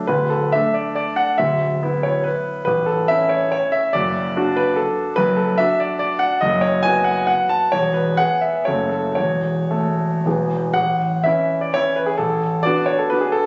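A clear, natural grand piano plays alone and up front in this graceful, rustic romantic dance in triple time, its dotted rhythms pushed and pulled with rubato, shifting into a new passage at 10.8 s before the excerpt ends at 13.5 s, all set in a moderate recital hall reverb and captured on a phone in the room, so the sound is dull at the top and carries a faint mains hum.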